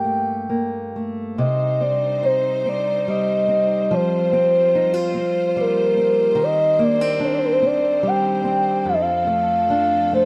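Mournful and haunting, this short cut from a longer Celtic slow air drifts in a rubato three-time feel. A pure, breathy lead with a sine-like tone, a soft attack and a chorus effect carries the melody up front, its sustained notes shaded with vibrato and a faint noise layer beneath. A fingerpicked steel-string acoustic guitar with a boxy parlour character and fresh strings accompanies throughout, and an occasional finger squeak is audible. At 1.4 seconds a distant studio string section enters with bowed, sustained chords that sound lush yet biting. The harmony moves from a minor colour through suspended and added-ninth chords before settling on a sixth chord, all set in light reverb within a dark, warm production.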